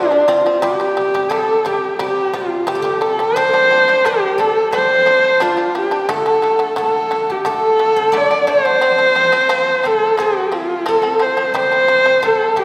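Galloping and proud, this Mongolian folk excerpt sets a warm, husky horsehead fiddle up front on the melody, bowed on horsehair strings with vibrato, portamento and a soft, boxy attack. Behind it, a guzheng played with fingerpicks adds a ringing, silvery second line in the background, while a bright, buzzing fretless shamisen plucks percussive arpeggios lower down. All three play from start to finish across the 12.6 seconds of this passage, cut from a longer piece and heard through the lush reverb of a concert hall.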